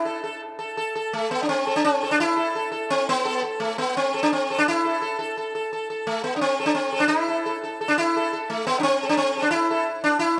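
Solemn and meditative, this Indian classical excerpt in raga Kafi presents a solo sitar playing alone across its 10.4 seconds, moving in a 7/4 metre with a straight feel while the pace speeds up throughout. The plectrum-plucked sitar sits up front, bright and buzzing, its sympathetic strings adding a shimmering halo within a range from A3 to A4. Close, detailed microphones and light reverb keep the instrument intimate and clear.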